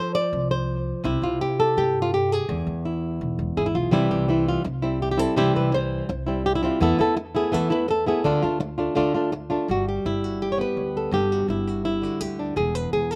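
Dry, this outdoor recording has the feel of an open-air performance cut from a longer piece, with a passionate, dramatic flamenco drive in straight 4/4. A boxy, fingerpicked acoustic flamenco guitar sits up front carrying the melody across a broad range, its finger squeaks audible as it moves through chords such as C, E, Dm and G. From 0.3 seconds a woody, thumpy pizzicato upright bass with steel strings supports it from further back in the mix.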